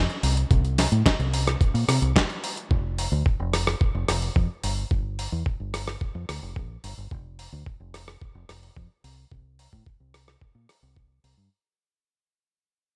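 Bright, 1980s-style digital production with light reverb gives this short nu-disco clip from a longer piece a glossy sheen, and it fades out over its full 11.5 seconds. The mood is feel-good and sunny, carried by a straight 4/4 pulse. A fingered electric bass sits up front from the very start, its tone warm and foam-muted, heard both direct and through an amp as it moves through its low register. A dusty soul drum kit with a sampler-style feel adds hi-hat, rim click and a medium-tuned snare, compressed and gritty with a tape-warm character and a touch of studio reverb. An electronic kick drum joins at 0.5 seconds, thumpy and up front, sharing that same compressed, tape-touched grit.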